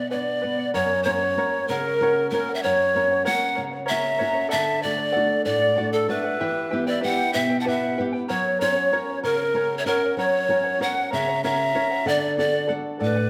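A recital hall's wet, 1.5-second reverb surrounds this earthy, melancholic Andean folk excerpt in 6/8 at 64 BPM, where a breathy, bright bamboo pan flute carries the melody close and up front, a reedy, distant quena with vibrato adds a second line, a shimmering fingerpicked charango with double strings and a fingerpicked flamenco guitar with audible finger squeak accompany, and all four play throughout over chords moving from Bm through F#, D and Em.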